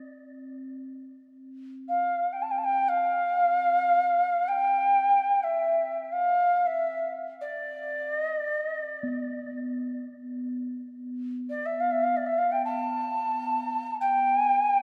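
A cavernous church reverb with a 3.5-second tail surrounds this haunting, meditative world piece in free time, tuned to A4 = 444 Hz and cut from a longer work. A pure, ringing quartz singing bowl, struck with a felt mallet and slowly beating, sounds softly at the start before a mellow cedar flute enters at 1.9 seconds, its airy, woody tone carrying vibrato, tongued chiff and a delay, up front in the mix yet distant in character. The bowl returns at 9.0 seconds beneath the expressive flute melody.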